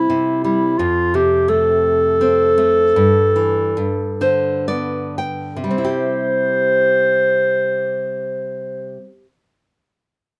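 A rough home-demo sound with moderate studio reverb gives this short lullaby, cut from a longer piece, an intimate, homespun character. In C major and a gentle 3/4 at 56-88 BPM, it feels innocent and tender. A mellow clarinet sits up front with the melody, played in a classical style with a soft attack. A bright, fingerpicked nylon-string guitar, also up front, supports it with deep classical accompaniment and a fill from 3.8 to 5.7 seconds, moving through C, F and G before settling back on C as the music slows. The clarinet stops at 9.1 seconds, and the guitar rings on a moment longer.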